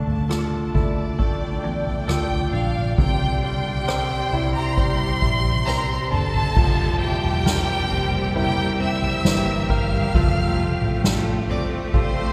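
Hopeful and tender, this pop ballad fragment carries a warm, expressive violin section melody, entering at 0.7 seconds, over clear baby grand piano accompaniment, a rich string section holding sustained chords in the background, bright, clean electric guitar arpeggios, a round, foam-muted electric bass and a soft-mallet drum kit with a boomy kick and dark cymbals that plays a fill from 5.7 to 6.6 seconds, after which an intense cello section adds a second line, the whole ensemble sitting in a long cathedral reverb.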